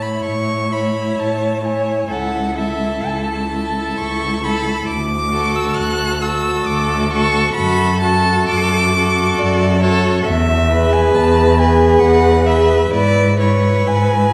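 Classical slow romantic movement for string quartet in A major, tender and lyrical, at 67 BPM in 3/4 with uneven beats and rubato, cut from a longer piece. A dark, intimate first violin carries the melody high above the ensemble, bowed sul tasto with light vibrato and a soft attack, while a clear, focused second violin holds a second line beneath it and a viola with vibrato and a smooth top supplies the accompaniment. Up front, a warm, expressive cello with portamento anchors the bass as the chords move from A through D to E/G#, with the quartet set in a wet recital hall reverb.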